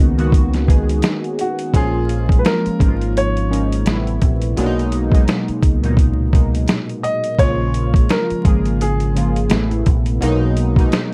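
Lo-fi hip hop with a hazy, nostalgic feel and a lazy swing, cut from a longer piece, built on up-front sawtooth analog keys, detuned and chorused with phaser and cassette-tape colour, over a round, dark fingered electric bass and a muffled, compressed, pitched-down sampler-style kit with a thumpy kick, medium-tuned snare and hi-hat, while a woody, vintage upright piano carries the melody with plate reverb from 1.4 to 9.8 seconds, all beneath a layer of vinyl crackle and minor-ninth chords.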